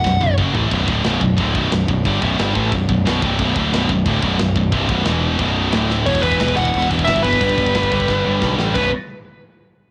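A drum fill opens this dark, epic heavy metal excerpt, with a brief stab from the smooth lead guitar and both rhythm guitars and the bass already driving underneath in a straight, fast 4/4. From 0.7 seconds the riff settles in: an up-front, scooped high-gain guitar and a second bright, high-gain guitar set further back drive through the low register, joined by a growly, overdriven picked bass. The tight acoustic kit sounds mid-forward, with a tight kick, a medium-tuned snare, china and crash cymbals, hi-hat and toms, and it breaks into short fills along the way. At 6.1 seconds the dark, overdriven lead guitar returns up front to carry a melody as the chords move from E minor to G, before the passage lands on a final power chord at 8.8 seconds. The whole take has the slightly worn character of a home cassette recording in a small room, with the tape coloring the guitars and drums.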